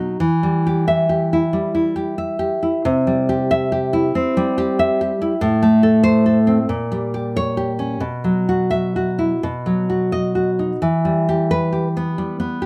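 Rubato phrasing stretches and relaxes the 4/4 pulse in this passionate, wistful romantic piece for solo classical guitar, a short passage cut from a longer work. The fingerpicked nylon-string guitar sits up front with a full-bodied, deep tone, moving from Em through C and Am to a tense A#m6 and a Bsus4 that settles onto B before returning home to Em at 10.8 seconds. Moderate studio reverb gives the guitar a gentle sense of room.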